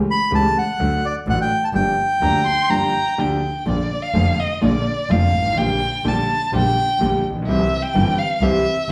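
Passionate and tense, this brief tango excerpt at 126 BPM in a rubato 4/4 moves from G minor to Bb major at 3.7 s, with a clear, vintage concert grand piano and a bowed, sul tasto double bass, distant and floating, underpinning a reedy, boxy bandoneon melody that gives way to an expressive violin with vibrato and portamento, which enters at 2.2 s and takes a solo from 3.7 s, all played live together in one room with a wet large studio reverb.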